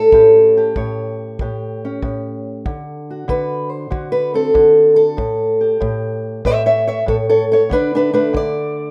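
A rough home-demo sound with a wet studio reverb frames this short cut from a longer acoustic country blues piece, rollicking and swaggering at 95 BPM in 4/4 with a swung eighth-note feel. Up front sits a fingerpicked old ladder-braced acoustic guitar, woody and dark with the dull ring of old strings, carrying the melody from the low A2 up to E5 and taking a solo across the whole passage. Tucked far beneath it, a smooth, punchy kick drum with a brushy touch keeps time from 0.1 to 8.5 seconds in a studio room. The harmony rests in A mixolydian, moving from A7 to D7 and back to A7 before landing on a bare D5 at 7.7 seconds. The result feels loose and intimate, like a duo working out a tune together.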